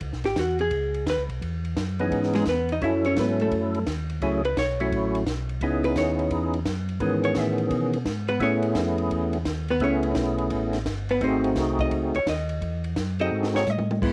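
A dark, clean hollow-body jazz guitar takes the spotlight, soloing up front through the whole passage with a picked, compressed tone, cassette tape grain and a touch of plate reverb. This smoky, bluesy soul jazz organ trio swings at 171 BPM in C# minor, moving through C#m7, F#m7 and Amaj7 before a G#7b9 turnaround. A mellow, round tonewheel organ carries the bass line from the first second, its chorus vibrato and slow rotary speaker adding gentle motion. From 2.0 seconds a fat, percussive second organ joins with third harmonic percussion and key click, also through slow rotary and chorus vibrato. A compact cocktail kit with a punchy kick, high-tuned snare and dark cymbals sounds dry and acoustic, closing with a fill at 13.3 seconds in this home cassette recording cut from a longer piece.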